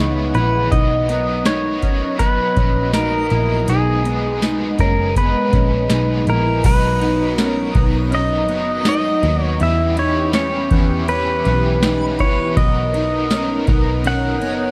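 A booming analog drum machine sets a straight 81 BPM pulse in 4/4 from 0.3 seconds, its deep kick, crisp snare, metallic hats, crash, ride and tambourine re-recorded in a large room to give this floating, blissful dream pop excerpt in B major its weight. Beneath it, a vintage muted picked electric bass plays round, foam-muted low notes, while a clean, fingered electric guitar traces dark, compressed arpeggios through ensemble chorus and tape echo. Out front, a pedal steel guitar carries the melody with twangy fingerpicked tone, volume swells and slide, trailed by tape echo. A biting, overdriven, double-tracked guitar sits further back with tremolo and chorus, and a swirling sawtooth analog pad holds detuned, slow-blooming chords through phaser and chorus. A very quiet reversed, granular texture glimmers high above, and the harmony drifts from C#m7 to Bmaj7 and B6 before an Em6 colours the second half, all wrapped in light reverb and a dark, warm production.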